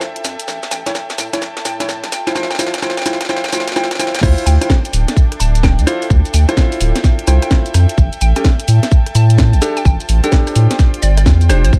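UK garage in a bouncy, skippy two-step groove, this dark, dry excerpt opens with a build-up in which the garage kit plays a fill of cracking snare, hi-hat, rim click, shaker and crash. Meanwhile a hollow, detuned square pluck with chorus moves through a filter sweep in the background, and a very quiet, breathy pad holds sustained chords. At 4.2 seconds the drop arrives as a tight, up-front electronic kick joins the deep, saturated sub bass. Short, polished grand piano stabs, which began just before the first second, and a veiled, muted string section, present from the start and pumping under sidechain, fill out the texture behind them.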